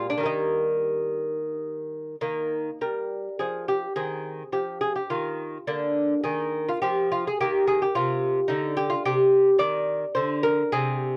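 A rubato 3/4 lilt moving between 88 and 110 BPM carries this short baroque-style dance, cut from a longer piece, in Eb major. A solo lute plays throughout, fingerpicked on nylon double strings with some octave-doubled courses, giving a mellow, delicate sound that sits up front and ranges from Bb2 to D5. A brief opening phrase gives way at 2.2 s to a longer second passage that runs to the close at 11.2 s. The harmony settles on Eb, then moves through Fm7 over Eb, Bb over D and a bare Eb5 before resting on Cm9. The mood is flowing and introspective, captured in a dry, close 1970s-style studio sound touched by light reverb.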